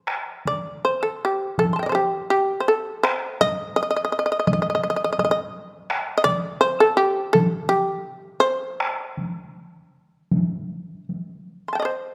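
A taiko ensemble opens this excerpt of Japanese traditional chamber music at 0.1 seconds, its heavy sticks sounding distant and roomy yet still set up front, though at a lower level than the melody. At 0.5 seconds a shamisen enters to carry the melody, its plectrum-plucked, fretless strings giving a percussive, buzzing tone that sits forward in the sound. The shamisen line moves through a range from G4 to C6 and continues until 12.1 seconds, after the drums have stopped. The pulse is loose and rubato over a 4/4 frame, and the mood is austere and still. A moderate recital hall reverb surrounds the performance, lending the acoustic instruments a measured sense of space.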